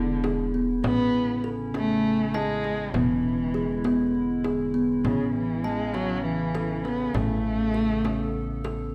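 Hopeful and shimmering, this short excerpt of contemporary chamber music moves in an uneven 7/8 over chords that drift between E7, Amaj7 and A before settling on Aadd9. An up-front bowed cello carries the melody with expressive vibrato and portamento, while a mellow, woody kalimba rings out arpeggios and a thumpy pizzicato upright bass holds the low end. Beneath them a warbling, lo-fi tape-like pad sustains dark, nostalgic chords with chorus and its own reverb, and a small, bright frame drum played with soft hands sits in the background of a moderate recital hall.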